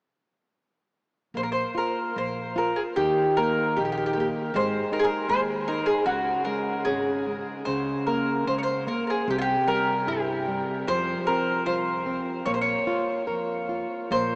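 A picked mandolin carries the melody up front, its double strings giving a round, acoustic tone that sits in a mournful, passionate fado-style ballad with a loose, rubato feel in 2/4. Beside it, an up-front flamenco guitar fingerpicks a dark accompaniment, while a pizzicato upright bass with steel strings adds a woody low line much further back in the mix. The bass enters first at around 1.3 seconds, the mandolin and guitar join at about 1.4 seconds, and all three play through to 14.4 seconds in this excerpt cut from a longer piece. The harmony moves through a sombre chain of chords, passing from Bb5 and Eb5 through a C before settling on Bbm. A huge, wet ambient reverb places the trio in a vast, echoing space, though the overall sound has the character of a small speaker.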